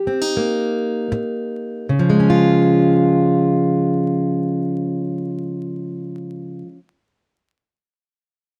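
Folk in a solo fingerstyle vein, this brief passage from a longer piece carries a nostalgic yet hopeful mood at an easy, unhurried pace in 4/4 with a gentle swing on the eighth notes. A single fingerpicked, plugged-in steel-string acoustic guitar plays throughout the 6.8 seconds, sitting up front in the mix with a warm, concert-ready tone. The opening phrase rests on an Eb chord and gradually slows down from the very start before settling onto Db at 1.9 seconds, where a new section begins and runs to 5.1 seconds. The sound is dry and close, like a 1970s studio recording, with a light touch of reverb on the guitar and a bed of vinyl crackle that adds to the wistful, intimate feel.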